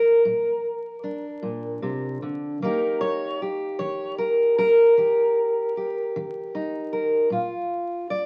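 Acoustic country blues in a slow 12/8 at 51 BPM with a straight feel, this short excerpt carries a swaggering, gritty mood. A lone fingerpicked steel-string acoustic guitar, a dreadnought with a full-bodied tone, plays the whole 8.3 seconds, ranging from Bb2 up to D5. The harmony rests on Bb, shifts to Eb at 2.6 seconds, and returns to Bb at 7.3 seconds. The guitar sits up front in a moderate studio reverb. The sound carries the crackle of a very old 78 rpm record, giving the playing an aged character, and the tuning sits slightly below standard pitch at A4 = 439 Hz.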